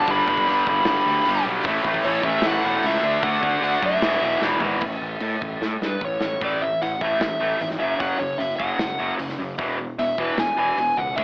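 A driving 151 BPM straight 4/4 pulse from a big, acoustic rock kit with a punchy kick and medium-tuned snare anchors this anthemic, energetic hard rock excerpt, with drum fills at 4.4 s and 5.6 s leading into a settled A major from 6.4 s. A dark, smooth overdriven lead guitar carries the melody over a bright, double-tracked overdriven riff guitar up front, while a tighter distorted riff guitar sits in the background until 4.8 s and a round, fuzzy picked bass adds weight beneath. Cassette tape coloring on the guitars and drums, a moderate spring reverb and an AM-radio, home-cassette character give the whole a gritty lo-fi sheen.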